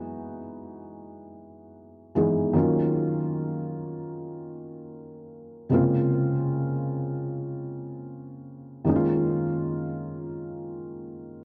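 Unfolding in free time, this sensual, moody R&B passage, cut from a longer piece, features a lone felt-muted upright piano, soft, dark and intimate with short sustain and placed up front, moving through Emaj9, Ebm7, Bbm9 and Db69 across its 11.4 seconds, bathed in a moderate plate reverb and a worn cassette-tape character whose warbly pitch drift gives it an aged feel.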